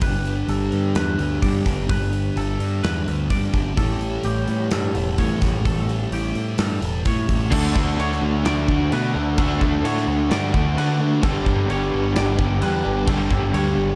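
A straight 4/4 groove from a gated 80s drum kit, with a tight kick, bright cymbals and an airy big-room sound up front, drives this wistful, dreamy shoegaze and dream pop rock excerpt until 13.6 seconds. A growling bass holds down the low end as a thick fuzz guitar with analog chorus and a hollow-bodied guitar with reverse reverb play riffs beneath a clean, twangy guitar's arpeggios, which carry subtle chorus and slapback echo. At 7.5 seconds a double-tracked overdriven guitar with tremolo joins in the background as the chords move from G and A7 to D6 and Gadd9, all within a dark studio production.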